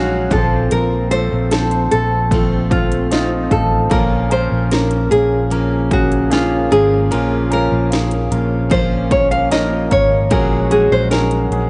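A straight, steady 4/4 pulse comes in at 0.3 s from a punchy, overdriven electronic house kit, with cracking snare and metallic hats that sound re-recorded in a large room. This short cut from a longer melancholic pop ballad is full of longing. Up front, a fingerpicked classical nylon-string guitar carries the melody through a tape echo. A growly, amped fingered electric bass holds low alongside it, while a clear concert grand piano with deep bass, long sustain and audible action noise supplies the accompaniment. Further back, a dreadnought steel-string guitar picks arpeggios through its own tape echo, and a very quiet, mellow French horn section sustains chords with light vibrato. The harmony moves from F/Bb to Bb minor and settles on Gbsus2/Bb at 10.3 s, all heard in a small room through worn, warbling cassette tape with a dull top end and drifting pitch.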